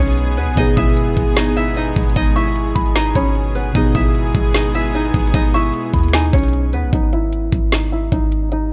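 A short excerpt of menacing, melancholic trap in G# minor opens at once with a mellow, ringing concert harp melody, fingerpicked and softened by a low-pass filter and digital delay. Above it, a delicate synth tine bell adds a bright, tinkling second line with a vintage FM character, warbling through chorus, phaser and delay. Beneath, muted felt-like synth keys sit in the background with an intimate, full-bodied darkness, while a bowed studio string section holds pure, floating sustained chords over a single G# minor harmony. At 151 BPM in a half-time feel, the up-front trap drum kit drives the track with a knocking kick, woody snare and crisp hats, anchored by a deep, boomy, clean 808-style bass. The bell drops out at 6.5 seconds, and a filter sweep at 6.9 seconds marks a new section as the strings and keys fall away, leaving harp, bass and drums to carry the close in a digital ambience.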